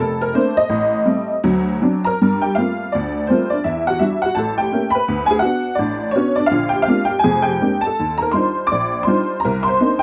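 A honky-tonk upright piano carries this short solo jazz excerpt alone, its detuned, jangly, woody tone sitting boxy and up front across a range from low F1 to high D6. At 166 BPM in 4/4, the playing swings on the eighth notes yet leans into rubato. The chords move through rich extended harmony such as Bbmaj9, A7b9 and Ebmaj9, in a close, dry, detailed recording that gives the instrument a vintage, swinging charm.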